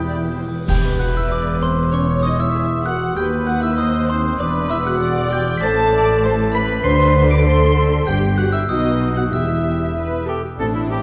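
A playful, whimsical cinematic film cue with a mischievous, magical air, cut from a longer piece. A bell-like glockenspiel struck with soft plastic mallets carries the melody until 10.2 seconds over bowed string sections with vibrato (close studio violins, violas, a lush cello section and an intense double bass section), while a present French horn section holds sustained chords and a chamber violin section also carries the melody in the background. Oboe, clarinet and an airy flute sound only briefly at the start and again near the close, and clash cymbals with concert bass drum mark a band accent at 0.7 seconds, all in a dark production bathed in wet concert hall reverb.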